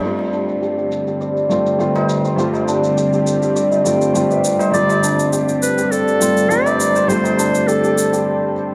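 This short fragment from a longer piece sits in a dark, earthy production bathed in a huge ambient reverb with a five-second tail, giving it a spacious, unhurried glow. It is organic downtempo at 102 BPM in 4/4 with a straight feel, resting on a G7sus4 chord in G mixolydian. A hammered santur ripples out shimmering, ringing arpeggios from the start, its tone shaped by a filter sweep and tape echo, while a felt-muted upright piano supports it with a soft, mellow, intimate accompaniment where the noise of its action is audible. A string-like drone enters at 0.5 seconds with a slow attack and detuned, tense sustained chords that evolve under a touch of vibrato. Low in the mix, an overdriven, electronic-sounding cabasa adds a layered, filtered pulse, and a high-tuned tabla with a short ring sits distant in the background. At 4.7 seconds a clarinet steps up front with a smooth, classical solo line, carrying the melody until a brief break at 8.3 seconds.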